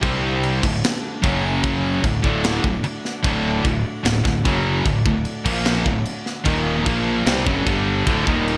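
A straight half-time 4/4 pulse drives this heavy, relentless metal excerpt: an up-front, gritty drum kit with gated reverb pounds kick, snare and crash beneath three bright, picked riffing guitars in the background (a high-gain distorted one, a scooped high-gain one and a double-tracked raw garage one with overdrive), joined by a growly fuzz fingered bass, while a very quiet, brilliant pipe organ plenum with baroque voicing sustains chords, all set in light reverb with a 1980s-style digital production.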